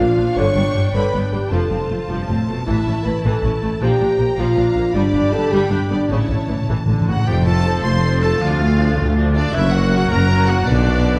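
Clear, intense violins carry the melody from the start of this heroic, adventurous orchestral film cue at 106 BPM in 6/8, over a lush second violin line, rich violas, mellow close-miked French horn chords, a very quiet ringing harp, and a cello and chamber double bass foundation; calf-headed timpani fill in at 6.1 seconds, a bright oboe joins at 7.1 seconds, and an airy, hollow flute, a dark clarinet and a smooth-topped tuba follow moments later, all within a reverberant scoring-stage sound.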